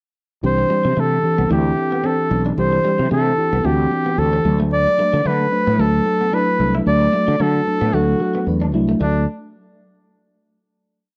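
A short, nostalgic pop piece opens at 0.4 seconds with a mellow FM electric piano and a fretless electric bass arriving together. The piano plays chords in eighths with a soft, round, dark tone colored by chorus and phaser, while the bass sits up front with a growly, amped, syncopated pop-funk line. A clear flugelhorn joins at 0.5 seconds as the solo voice, carrying a hook-based melody with vibrato and a touch of slapback echo. In the background, an electric guitar at the edge of break-up picks a muted single-note riff, compressed and slightly broken-up, with subtle chorus and its own slapback echo. Over a lightly swung feel, the harmony moves from Cadd9 to D, and the piece closes on a final chord from 9.0 to 11.1 seconds, its dry, close 1970s-style studio sound given a glossy sheen by digital ambience.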